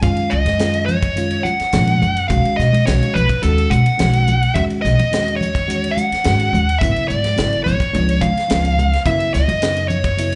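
Heard live through a club PA, this funky, slick electric jazz fusion carries light reverb, club ambience and a muffled top end. Up front, a dark, overdriven lead guitar picks out the melody with plate reverb and slapback echo, over a reedy, worn electric piano that sounds slightly out of tune and also carries slapback echo. A woody, thumpy pizzicato upright bass on gut strings sits alongside a small-room funk kit with a high-tuned snare and tight kick, while damped, soft-handed congas with slapback echo sit in the background from 0.5 s.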